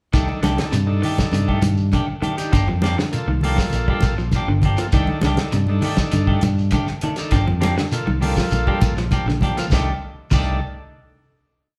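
Hypnotic, driving afrobeat at 100 BPM in C dorian, where a punchy, round fingered bass riff and a damped 70s kit with a fat snare and dark cymbals anchor a groove that alternates Cm69 and Gm7, while a slightly broken-up guitar picks a background ostinato, a clean semi-hollow guitar strums funky upper chord shapes, a buzzy combo organ adds spring-reverbed rootless stabs, a grainy shekere and very quiet, soft-handed congas fill in the percussion, and the band, playing live in one room with a wet studio reverb, lands on a final Cm69 chord at 9.7 seconds.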